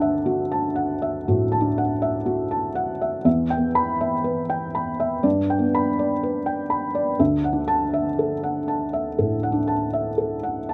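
Tender and intimate, this short excerpt of neoclassical minimalist piano moves at a rubato 60 BPM in D major, with a felt-muted upright piano playing alone across a span from D2 to B5. The piano's thick felt gives it a soft, dark, mellow voice that sits up front, heard dry and close with little reverb and open-air surroundings rather than a room. Its harmony drifts from Dadd9 through Em and G before settling back on Dadd9 at 7.2 seconds.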